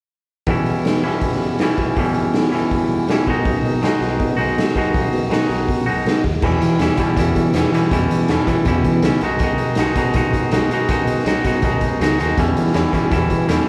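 A clean, twangy electric guitar riff opens this carefree yet wistful indie rock excerpt at 0.5 s, sitting up front beside a gritty, saturated garage drum kit with a punchy kick, medium-tuned snare, hi-hat and crash, all at a brisk 162 BPM in a straight 4/4. An overdriven, growling fingered bass joins in the background at 3.5 s as the harmony rocks between Em6 and B6. The band sounds as if it is playing live together in one large studio room, with a moderate reverb around the parts.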